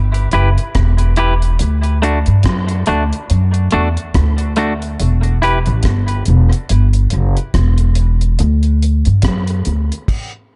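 A woody, growly upright bass sits up front from the very start of this hypnotic, heavy dub reggae cut at 71 BPM in E minor, joined by a deep, dark drum kit of tight kick, rim click, hi-hat and crash touched with dub echo, while a twangy, picked clean electric guitar with warbly pitch drift and its own dub echo moves over Em and D until 5.6 s, inside an echo-heavy, small-room mix with a dulled top end that halts at 10.1 s.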